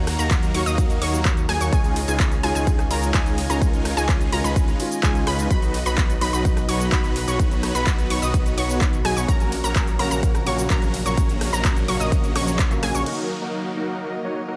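Festival progressive house at 127 BPM in F# major, this euphoric, uplifting passage from a longer piece opens squarely in the drop, cycling through D#m, C#add9, B and F#/A#. A punchy, overdriven electronic kick sits up front beside a layered big-room kit of crash, ride, metallic hi-hats, handclaps, rim clicks and shaker, while a thick, chorused detuned saw bass with tube saturation holds the low end. Huge, lush supersaw chords carry the riff through a low-pass filter and tape echo, topped by sparkling unison pluck arpeggios with a noisy, ring-modulated edge and filter sweep. Beneath them, a worn, mellow baby grand piano with tape echo and an intimate, softly bowed string section with gentle vibrato add depth in the background, every melodic part pumping against the kick. A band accent lands at 12.6 seconds, and at 13.1 seconds the drop gives way to an electronic downlifter as the chords return to D#m, all set in a light digital ambience.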